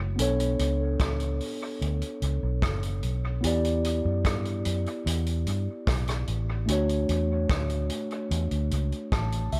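Lovers rock reggae at 74 BPM in D major, this tender, smooth excerpt sets a mellow tine electric piano, clean through its built-in speakers and trailing dub echo, over a dark, round, foam-muted fingered electric bass up front and a vintage drum kit whose punchy kick, hi-hat and rim click also carry dub echo, moving through Bm9, Em7 and Dmaj7 in a small room before the electric piano adds a fill at 8.7 seconds.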